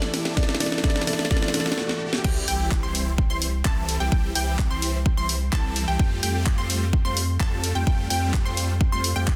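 This excerpt of festival progressive house at 128 BPM in C major opens on a build-up: a huge, euphoric supersaw riff treated with phaser, pumping sidechain and dub echo rides over a house kit of cracking snare, handclaps, hi-hat and crash, while a background riser builds beneath, paired with a sub drop. Behind them sit a felt-muted upright piano, soft and dark with audible action noise, a catchy square-wave unison lead on a single high note, and a very quiet, airy pad holding chords over A minor. A punchy, tape-flavoured electronic kick joins at 0.4 seconds, and drum fills carry the build into a brief stop before the drop lands with an impact at 2.2 seconds. From there the chords move from C to Fadd9, a deep, saturated sub bass pumps under the kick, and a lush, detuned unison pluck spins arpeggios high above the supersaw. The mood is anthemic and uplifting, the kit sits up front with a large-room character, and the dense, heavily limited master carries only light reverb.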